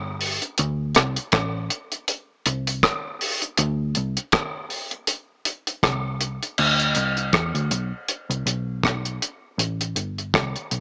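A dark, round, foam-muted electric bass opens this bittersweet, longing lovers rock reggae fragment, joined at 0.2 seconds by a dry, up-front drum kit with a tight kick, rim clicks, hi-hat and crash cymbal, all carrying a swung sixteenth-note feel through a moderate spring reverb and the small-speaker haze of a home cassette recording.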